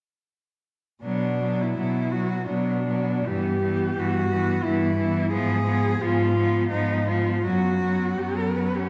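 A rich, expressive single cello carries the melody up front, its soft attack, vibrato and portamento lending this yearning, elegiac classical piece for cello ensemble a singing, sorrowful voice. Beneath it, a second cello adds a smooth, even inner line set distant in the background, while a third supplies a clear accompaniment lower down. A close, focused bass cello anchors the group, also placed up front. The four bowed players, each using vibrato, enter together at 1.0 s and move in a flexible, rubato triple metre over harmony that passes from Bm through Em/G and G#m6 to B5/F#. A long scoring-stage reverb and a dark production wrap the ensemble in this passage cut from a longer work.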